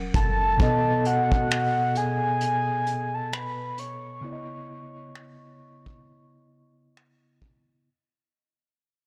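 Moody and longing, this slow contemporary R&B excerpt with a swung feel sets a mellow tine electric piano playing chords beneath a round, detuned, octave-layered synth lead with chorus, vibrato and delay, while a soft brush kit of finger snaps, hi-hat and a tight kick keeps a dark, smooth pulse. A deep, boomy 808-style bass sounds only briefly at the start, ending by 0.6 s. The small-room recording carries light reverb and a blown-out, overdriven character, with a filter sweep and a fade-out running through its whole length.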